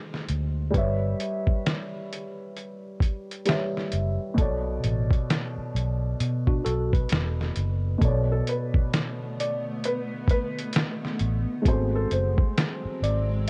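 A thumpy, overdriven sampler-style drum kit with a fat snare and 12-bit grit sits up front in this hazy, melancholic lo-fi hip hop excerpt at 66 BPM in B minor, swung on the 16ths, alongside a round, foam-muted electric bass and a dark, woody upright piano softened by cassette tape and a low-pass filter. A worn, slightly out-of-tune tine electric piano adds a brief second line with analog delay from 6.5 to 8.0 seconds, before a soft, felt-muted upright piano carries the melody from 8.3 seconds and a cloudy granular pad blooms in at 8.9 seconds. Chords such as G#7b9 and Bm9 drift beneath light reverb and the warbling pitch drift of old tape.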